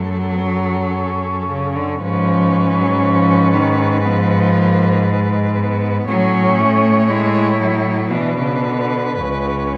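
Yearning and solemn, this brief classical passage for a cello ensemble, cut from a longer piece, unfolds in a slow, rubato 4/4 at around 53-60 BPM, tuned to A4 = 441 Hz. Four bowed cellos, each played con sordino by a single player, sound together from start to finish, their shared tone dark and veiled. The melody sits highest, from A4 to C#5, sung with light vibrato and set a little quieter than the lower voices. Beneath it, a distant second line uses vibrato, soft attacks and portamento. An up-front accompaniment part with light vibrato and a bass line with soft attacks and portamento fill out the lower range. The harmony moves from F#m through Fdim/Ab and A6 to Bm, arriving at Bsus2/C#, all carried by a recital hall reverb with a 1.4-second decay.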